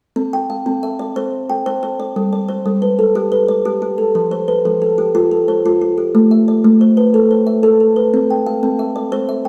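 A light reverb surrounds this short fragment, and the kalimba sits up front with an airy tone, as if the listener sits close to a single player. It is a solo kalimba piece in a southern African traditional style, set in 12/8 at 120 beats per minute counted in dotted quarters, with a straight feel and a hypnotic, warm mood. The kalimba plays arpeggios from 0.2 to 9.5 seconds, spanning F3 to G5, and each fingertip pluck rings out with a woody, hollow-box tone that stays mellow and soft. The harmony moves through C, G, F and A minor before settling back on C at 8.1 seconds, in C major. The passage is cut from a longer piece.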